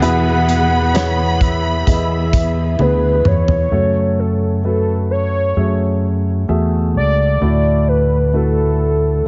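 Softly reverberant with a dulled top end, this hopeful, heartfelt pop ballad fragment places a velvety, chorused synth lead up front over a mellow grand piano and a punchy, amped fretless bass, while a lush violin section, a distant bowed string section and a loose small-room drum kit with a fat snare fill out the opening, with a drum fill at 2.8 seconds before those three parts fall away by 3.7 seconds, leaving lead, piano and bass to carry the move through F#madd9 and Dadd9.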